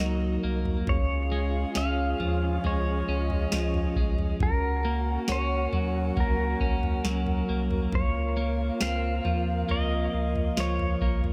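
A booming analog drum machine with a deep kick and crisp snare sets a slow, straight 68 BPM pulse in 4/4 from 0.7 seconds, under a round sine sub bass that sits up front in this dreamy, blissful dream pop fragment in Db major. A bright, clean twelve-string electric guitar picks arpeggios with subtle chorus and analog delay, while a breathy flute ensemble holds sustained chords with vibrato. Alongside them a fingerpicked pedal steel guitar carries the melody with slide, volume swells and analog delay, all within a light, echo-heavy reverb.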